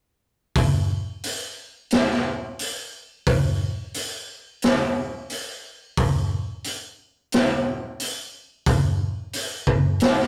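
A metal excerpt at 89 BPM in straight 4/4, ominous and hypnotic, carried by a raw garage drum kit of hi-hat, boomy kick and medium-tuned snare playing from 0.6 to 10.3 seconds. The acoustic kit sits up front with a mid-forward, gritty, saturated character and a rolled-off top, caught in a small room. The rough rehearsal-room recording carries tube saturation and little reverb, so the drums feel close and unpolished.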